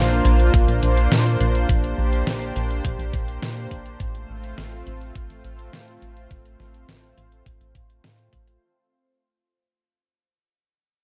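A straight 4/4 pulse carries this short synthwave excerpt: a detuned 8-bit digital drum machine supplies hi-hat and a medium-tuned snare from 0.1 seconds, and an electronic kick drum adds a thumpy, sampler-style punch from 0.5 seconds, both tape-warm and re-recorded in a small room. Underneath, a chorused synth bass sits up front with a glossy, dark tone built from pulse, sawtooth and triangle waves, wave-folded and ring-modulated, with a fast filter pluck before it sustains. Above it, a lush unison pad of detuned sawtooths holds sustained chords, bright and warbling with chorus, slow to bloom and long to release, and pumping against the sidechain. The harmony moves from Bbadd9 to F/A, giving the passage an uplifting, romantic glow. Light reverb surrounds the mix, and the whole clip fades out across its length.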